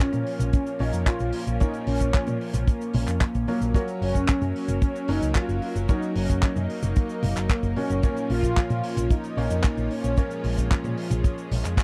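A melodramatic, danceable italo disco excerpt opens at once with a mellow, brassy synth lead carrying the melody through chorus and tape echo, over a lush, detuned unison pad holding slow-attack chords and clear, worn grand piano stabs set in the background. A tight, up-front kick anchors a damped 70s kit of cabasa, handclaps, hi-hat and toms, while a dark, round picked electric bass with an envelope filter moves beneath. The sound is a dry, close 1970s-style studio recording, and the lead stops at 10.7 seconds as the other parts carry on to the end of the cut.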